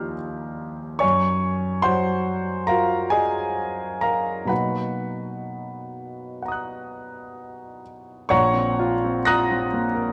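A clear, intimate grand piano opens alone on an Eb6/9 chord and drifts through Gbmaj7 and a Bmaj7 at 4.5 seconds, setting a mysterious, nocturnal mood in this impressionist classical solo piece in Bb minor, taken from a longer work. The playing moves in a loose rubato around 60-73 BPM in 4/4, spanning Bb1 to Bb6, and at 8.3 seconds it settles onto a Bbmadd9 chord as a new passage begins. The piano sits present and up front with its action noise audible, framed by a moderate scoring-stage reverb and a dark production.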